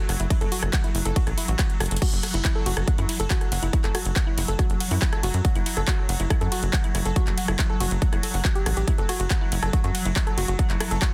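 A dense, heavily limited and dry mix opens this hypnotic psychedelic trance excerpt, where a punchy up-front electronic kick and a driving sawtooth sequencer bass sit beneath a big-room dance kit of metallic hats, claps, rim clicks, ride and crash, while a woody, warbling wave-folded pluck riff with chorus and delay weaves over a bright, pulsing gated chord texture, a drum fill at 1.8 seconds marking the shift from an F#m7 chord to F#7(no3).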